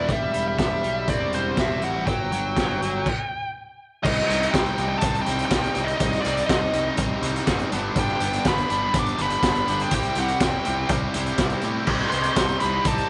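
A nasal lead guitar with a parked wah carries the melody in this indie rock excerpt, adding overdrive and tape echo over a bright, double-tracked distorted guitar riff and a growly fuzz bass, while a gritty garage drum kit with a boomy kick sits up front at a straight 122 BPM in 4/4. After a stop from 3.1 to 4.0 seconds, the band moves through Cm, G, C and back to Cm. The mood is wistful yet carefree, set in a small room with moderate plate reverb.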